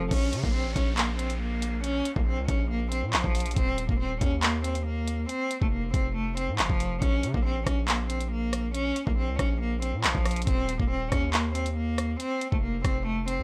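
A half-time 4/4 drill groove at 139 BPM drives this dark, tense hip hop excerpt in Bb harmonic minor, where a drum kit of knocking kick, metallic hats, handclaps and rim clicks carries vintage 12-bit sampler grit, a heavy, saturated 808-style bass hits aggressively beneath, a smooth bowed solo cello sings an even, vibrato-laden melody up front over Bbm, Eb5 and F5 chords, and a background downlifter runs until 3.6 seconds, all in a dry, gritty digital ambience.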